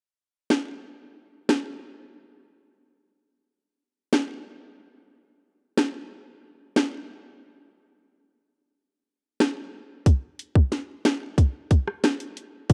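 Sultry and hypnotic, this short dancehall passage, cut from a longer piece, moves in a straight 4/4 feel carried entirely by an island pop drum kit. The drums enter at 0.5 seconds and run to the close at 12.7 seconds, built from hi-hat, kick drum, rim click and snare drum. Their electronic, produced character shows in a tight kick, a sharp snare and warm hats, all sitting up front in the mix. The passage shifts into a second section at 10.1 seconds. A digital ambience surrounds the kit, and the overall sound has the rough quality of a home demo mix.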